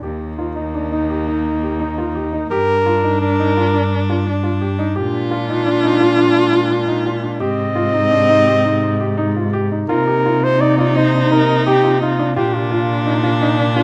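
Close, detailed microphones and light reverb give this hopeful, shimmering contemporary chamber piece an intimate sound as it moves in 7/4 at 170 BPM in Eb major with a straight feel. An up-front flugelhorn carries the pop-style melody with light vibrato until 13.2 seconds, while a focused, boxy bowed viola plays a second line, a grand piano with short sustain adds arpeggios and a smooth, even bowed cello holds the bass. After the harmony moves from Eb to Gm7, a mellow woodwind section adds tight sustained chords in the background from 5.0 seconds as the progression passes through Bb7 and Abmaj7 to Cm7 and Bbadd9, in an excerpt cut from a longer work.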